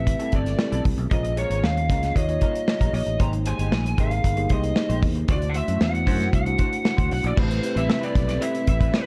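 An overdriven, lo-fi lead guitar through a small cranked amp carries the melody in this upbeat, glossy slice of polished 1980s jazz-funk pop. It rides over a mellow tine electric piano bathed in lush chorus, a growly fingered electric bass, and a slightly broken-up picked guitar riff sitting in the background. An up-front studio drum kit with a tight kick and rolled-off top drives everything in a small, dark room, and at 7.4 seconds a very quiet, woody string section joins in with bowed sustained chords.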